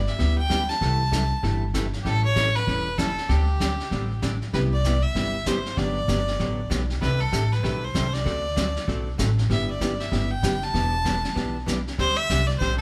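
A brisk 193 BPM swing in 4/4 drives this playful western swing excerpt in G major, with a vintage kit played on brushes (tight kick, medium-tuned snare, rolled-off top) and a woody, dark upright bass plucked up front. A biting fiddle with light vibrato carries the melody in a clear, nasal, earthy voice, while a clean, compressed hollow-body archtop guitar picks the accompaniment underneath. The quartet plays live together in one large studio with moderate reverb, moving through sixth and seventh chords such as G6, Cmaj7, Cm6 and D7sus4.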